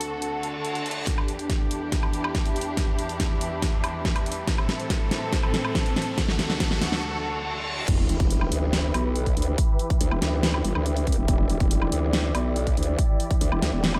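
Set in a light reverb, this chaotic, heavy wobble dubstep excerpt in E minor runs at 141 BPM with a half-time feel, opening on lush, bowed symphonic strings holding sustained chords through a low-pass filter and sidechain pumping, beside an airy, breathy pad with chorus that drops out at 7.0 seconds. A big-room dance drum kit with a huge snare, crash, hi-hat and woodblock plays from the start, and a punchy electronic kick joins it at 1.1 seconds to drive the build-up, while reverse cymbals, a riser and a sub drop sit in the background around a short break. At the drop at 7.9 seconds, a growling, saturated wobble bass with overdrive and formant filtering storms in up front over the Em chord.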